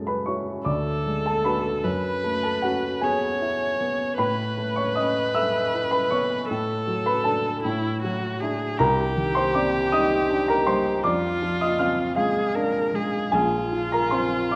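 Flowing in a slow, rubato 6/8 at 52 dotted-quarter beats per minute, this hazy, wistful impressionist duo for viola and grand piano is cut from a longer classical piece. The baby grand opens alone with an F#m9 chord, laying down a warm, natural accompaniment that spans from deep bass notes up into the high treble. A single bowed viola enters at 0.7 s to carry the melody in a compact middle range, its tone rich and focused with vibrato and a smooth top. Both instruments sit up front, wrapped in the wet reverb of a scoring stage that lends a soft, lingering halo. The harmony drifts through colorful extended chords such as F#m11, Aadd9 and Esus2/A before slipping from F# minor into F dorian at 8.8 s, moving through Cm9 and Fm6 to close on Bb7sus2.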